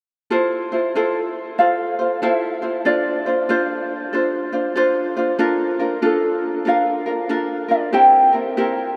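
A lazy swung eighth-note lilt carries this languid, sunny Hawaiian excerpt, where a warm, thumb-plucked ukulele lays down the Fmaj7, Dm7, Bbmaj7/D and C7 chords from 0.3 seconds and a second, fingerpicked ukulele steps up front with a light, warm melody from 1.0 seconds, both bathed in a huge, wet reverb that makes them sound as if they're drifting through a vast, echoing space.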